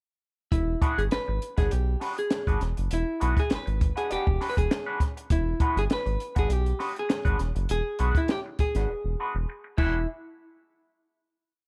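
A syncopated funk groove with ghost notes on a compact cocktail drum kit, with its high-tuned snare and punchy kick, drives this strutting, gritty E mixolydian piece at 100 BPM in 4/4, as a round analog bass plays a deep syncopated riff anchored on the downbeat, a twangy clean electric guitar scratches out sixteenth-note rhythm through a wah pedal, and a dark vintage hollow-body jazz guitar sings hook phrases over an E9 chord, until a drum fill at 8.9 seconds leads to a final hit at 10.1 seconds.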